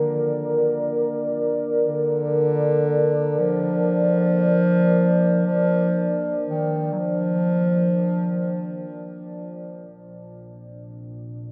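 A mellow, distant bass clarinet sings a classical-style melody with delay over a deep, detuned sawtooth pad holding sustained Bb major chords with chorus and a sub octave, drifting in free time in a vast cathedral reverb; this unsettling, ominous dark ambient drone, tuned to A4 = 444 Hz, lets the clarinet fall silent at 9.1 s before the pad shifts to F/Bb at 9.6 s and rings on until the cut at 11.5 s.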